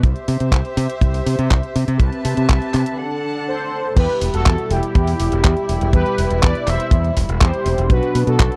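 Italo disco in E minor at 122 BPM, this short cut from a longer piece feels nostalgic and melodramatic, set in a dry, close 1970s-style studio sound with little reverb. A tight, up-front acoustic kick drives the straight 4/4 pulse alongside a detuned 8-bit drum machine with crash cymbal, handclaps and hi-hat, its sampler-style tones tape-warm and re-recorded in a small room. A bright, punchy fingered electric bass sits directly in front, while a dark studio string section holds soft-attack sustained chords, bowed sul tasto with light vibrato for an intimate ensemble color. The harmony moves from C through Am7/C to D, where a break arrives at 3.0 seconds, before settling on Em at 4.0 seconds as the second section opens and turning to Bm near the end. At 3.5 seconds a bold, fat analog synth brass takes the melody, its detuned sawtooth tone with sub octave, filter sweep, chorus and tape echo giving it a warbling, vintage edge.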